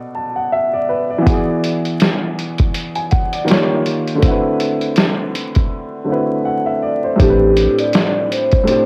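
A woody upright piano sits up front in this hazy, reflective lo-fi hip hop excerpt, carrying swung jazzy chords through a cassette-tape grain, joined at 1.3 s by a compressed, pitched-down sampler kit with a thumpy kick, a medium-tuned snare and hi-hat that sound muffled and re-recorded in a large room. After a break, a mellow, ringing vibraphone played with soft mallets takes the melody at 7.2 s with a slow motor vibrato, briefly underpinned by a deep, full sub bass of sine and triangle tones doubled at the octave. Light reverb and vinyl crackle give the whole piece a home-cassette haze.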